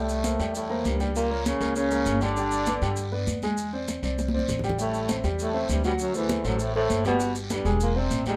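A breathy trombone carries the melody in this lively, sophisticated Afro-Cuban jazz fragment, its scooped notes, vibrato and smooth top giving it a warm jazz voice. Beneath it, a baritone saxophone plays a second line with a soft attack and a whispered, intimate, vintage tone, sitting lower in the mix. A grand piano with a natural, warm sound supplies the accompaniment, while a plucked upright bass, woody and dark with steel strings, stands up front. Bright, high-tuned congas played with soft hands stay in the background, joined by grainy, mellow maracas and a raspy, band-limited guiro, the three percussion parts all entering within the first 0.2 seconds. A short fill at 4.2 seconds punctuates the straight 4/4 groove, and a moderate club reverb places the band in a club setting in this passage cut from a longer piece.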